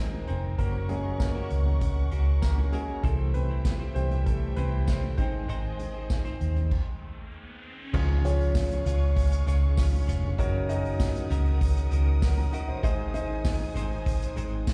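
Heard as a live gig through the venue's PA with a recital-hall ambience, this excerpt of anthemic piano-driven pop moves at 98 BPM in Db major. A woody, intimate upright piano with audible action noise and slapback echo carries a solo through the first 7.9 s. Beneath it sit a round, foam-muted fingered electric bass up front, a distant, roomy acoustic kit played with bundle sticks under dark cymbals, a clean, scooped direct guitar riff with tremolo, and lush bowed strings with vibrato and portamento. A jingly tambourine stays in the background, and an electronic riser fills the stop from 6.7 s before the music opens onto Db.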